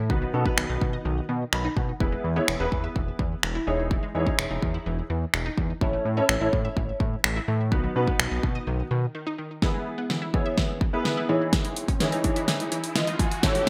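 A straight 4/4 dance-pop pulse at 126 BPM in E major drives this summery, upbeat excerpt, where a punchy pop drum kit with gated reverb, finger snaps and a fat snare sits up front beside a thick, detuned sawtooth analog bass and a dark, mellow grand piano, both pumping to the sidechain, while a lush unison pluck with chorus and delay spins arpeggios in the background, the bass drops out at 9.1 s for a brief break before a drum fill builds toward a background riser entering at 11.4 s, all framed by bright 1980s-style digital production with light reverb.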